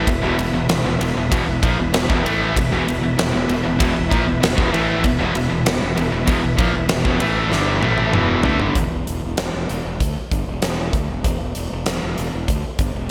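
Swaggering and powerful, this hard rock excerpt at 97 BPM opens on an E5 chord, with two bright, distorted picked guitars grinding out a riff in the background while a reedy tonewheel organ holds sustained chords through a slow rotary speaker, overdrive and chorus vibrato. A growly, round fuzz-fingered bass anchors the low end, and a huge arena drum kit sits up front with a punchy kick, a fat snare and gated reverb. A drum fill from 7.5 to 8.8 seconds leads into a new section where the guitars and organ have dropped out, leaving bass and drums to carry on under the bright, 1980s-style digital sheen and plate reverb.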